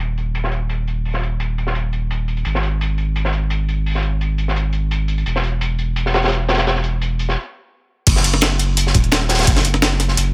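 Lush and warm, this liquid drum and bass excerpt moves at 171 BPM in a straight 4/4, tuned to A4 = 438 Hz. A deep, thick sine sub bass sits up front throughout, tube-saturated with a fast attack and sustained notes between Eb1 and Ab1. Alongside it, a crunchy acoustic breakbeat kit of hi-hat and high-tuned snare sounds dark and smooth, with a rolled-off top, filtered hats and snare, and a studio-room reverb. After a stop at 7.4 seconds, the drop lands at 8.1 seconds, bringing in a compressed, pitched-up sampler-style breakbeat kit with crash cymbal, hi-hat and a medium-tuned snare, placed up front with a tape-like grit. A thumpy electronic kick joins at the same moment, and studio ambience surrounds the whole performance.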